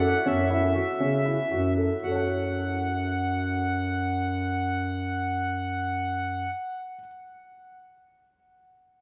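Contemporary chamber music in 7/8 at 226-247 BPM in eighths, this hypnotic, pensive excerpt in F# minor slows down through its opening 2.0 seconds, moving from F#m7 to F#m as a reedy, close-miked accordion carries the melody up front over a dark baby grand piano's arpeggios with audible action noise and a smooth-topped bass clarinet's bass line, all set in a vast, echoing cathedral reverb until the piano rings on alone to 7.1 seconds.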